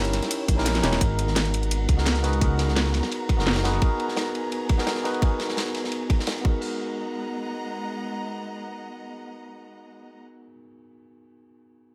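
A lush, dreamy liquid drum and bass excerpt opens on a clean tine electric piano with dub echo, softly bowed strings with vibrato, a deep, rumbling detuned saw bass that stops at 3.8 s, a gritty breakbeat kit with dark cymbals, and a drum and bass kit with a cracking snare and bright hats, joined at 0.5 s by a tight, up-front electronic kick, before a drum fill leads into filter sweeps on the drums and piano that run until 6.6 s.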